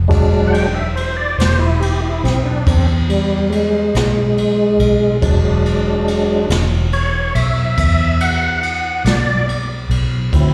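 A bright, reedy tonewheel organ takes the solo across this 10.5-second cut from a longer slow blues, its sustained chords coloured by chorus vibrato, audible key click and a slow rotary speaker, sitting up front over an E9 chord. A dark, round, foam-muted electric bass holds the low end alongside it, while a distant, roomy brush kit with dark cymbals, a medium-tuned snare and a boomy kick plays softer in the mix. The laid-back, rollicking 12/8 groove at 47 BPM sounds like a live gig heard through the venue's PA, with light recital-hall reverb.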